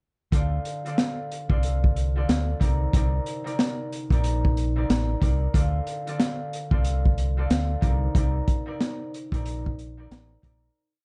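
Boom-bap hip-hop at 92 BPM with a swung 16th feel, reflective and gritty, where a crunchy breakbeat kit with a punchy kick and high-tuned backbeat snare sits up front beside a deep, round fingered electric bass line, while a filtered concert harp rings with chopped, fingerpicked chords repeated like a sampled loop over Dm7 and Cm7, all in a dark, dry production that fades out from 8.1 seconds.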